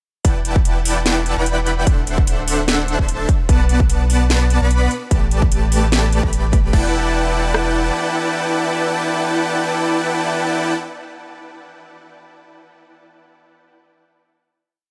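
A huge, detuned supersaw leads this short future bass piece, holding thick, compressed chords in a spread voicing with syncopated pushes that throb in tempo, colored by vibrato, sidechain pumping and a dub echo. It sits up front over a deep, saturated sub bass that follows the chord rhythm and pumps along with it until 7.9 seconds. Two electronic drum kits drive the half-time feel: a punchy, layered kick with rim clicks, and an overdriven trap kit with a sharp snare, metallic hats, hat rolls and crashes that sounds re-recorded in a small room. The mood is emotional and bittersweet, moving through Em11, D9, Bm7 and A7sus4 during the drop. At 6.7 seconds the drop gives way to a final Em11, and once the drums and bass have dropped out by 7.9 seconds, the supersaw rings on alone until 10.7 seconds in a digital ambience.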